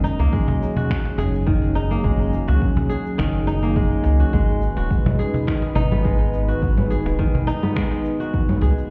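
Organic downtempo with a hypnotic, mystical mood, this short excerpt moves at an unhurried pace with a light swing on the sixteenths. A bright, ringing kora plays fingerpicked arpeggios up front, its crisp notes carried by delay, while a smooth, detuned sawtooth pad holds sustained chords beneath it with chorus and sidechain pumping. A round, sine-like sub bass sits deep and up front, also pumping with the sidechain, as the harmony moves from F#add9 to G#m7 at 4.3 seconds. The rhythm comes from a layered, tape-warm electronic kick, an overdriven blend of electronic shaker, finger snaps and congas, and a woody cajon with faint snares kept close and dry in the background. The whole mix sounds as if heard muffled through a wall, with a club-like reverb lending it a distant, enclosed atmosphere.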